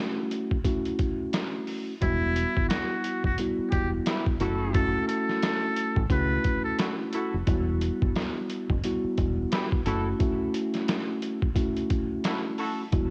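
A buzzy, breathy muted trumpet carries the melody from 2.0 to 6.8 seconds, its jazz-style solo marked by light vibrato and scooped notes and trailed by tape echo. It sits over a gritty, moody boom-bap hip-hop groove at 88 BPM with swung sixteenths, where a mellow, clean tine electric piano and a muffled, pitched-down sampler-style drum kit with a thumpy kick open a brief break before a dark, round fingered electric bass arrives. A tight, smooth-topped horn section adds jazz-style stabs from 4.1 seconds, as F#m7 and Emadd9 alternate under light reverb and the warm grain of a home cassette recording, in this fragment of a longer piece.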